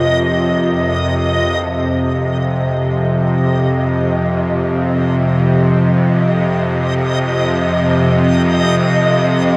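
Dark ambient drone in free time, this vast, ominous excerpt hangs in a cathedral-like reverb with a tail of several seconds. A tense, string-like bowed drone sits up front across the whole 9.6 seconds, low in the register, its sawtooth edge roughened by a noise layer and ring modulation and colored by vibrato. Behind it, a sweeping resonant pad sustains a Dbmaj13/F chord with a filter swell and chorus, but it drops out at 1.6 seconds, leaving the harmony to settle on F5. A reversed, granular texture hovers high on Eb5 throughout, dreamy and swelling, and a synth texture fades in from 1.6 seconds to the end. Deep in the mix, an eerie, inharmonic FM bell with a warbling, vintage character plays barely audible arpeggios.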